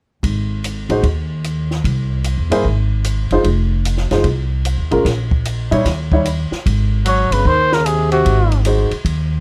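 A breathy, mellow trumpet carries the melody in this short cut from a sophisticated, playful small-group swing and bop piece, entering at 7.1 seconds with vibrato and scooped notes, sitting up front. A soft-attacked tenor saxophone joins it at the same moment on a lower second line, also breathy and scooped, with its own vibrato. Before the horns arrive, an upright piano with a woody tone and short sustain carries the accompaniment from 0.9 to 6.2 seconds through Ab mixolydian changes such as Fm7 and Eb7b9. A thumpy pizzicato upright bass on steel strings drives the 150 BPM swing from the first moment, while a compact cocktail drum kit sounds dry and natural, with dark cymbals, a high-tuned snare and a punchy kick under hi-hat and ride. Light reverb gives the group a small shared room.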